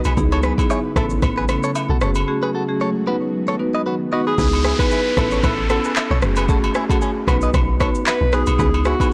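A blown-out, overdriven recording with light reverb frames this smooth, sultry afrobeats excerpt in C# minor, moving at 114 BPM in 4/4 with a gentle 16th-note swing. An electronic afro-pop drum kit with a deep kick drives the groove with handclaps, rim click and shaker, while a round, dark log drum bass with a fast, percussive attack sits up front beneath it. A smooth marimba played with medium mallets and a bright, twangy, direct-recorded clean electric guitar riff with digital delay fill out the accompaniment, joined by compressed, saturated agogo bells and woodblock. An ethereal, detuned pad with ensemble chorus holds slow-attack chords over a C#m7, Aadd9, F#madd9, B progression until it drops out at 4.4 seconds. A breathy, intimate alto saxophone takes the solo melody from 4.1 seconds, and an electronic downlifter enters at 4.4 seconds beneath it.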